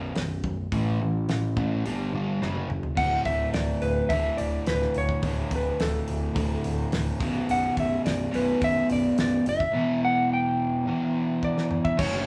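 A crunchy, double-tracked guitar riff sits up front over a growling, round overdriven bass and a damped, dry 70s drum kit with a fat snare, tight kick and dark cymbals, opening this gritty, swaggering classic rock excerpt at 106 BPM, and after a drum fill a clean lap steel guitar enters at 3.0 s with a slide melody, the band playing live together in a stone room with moderate reverb.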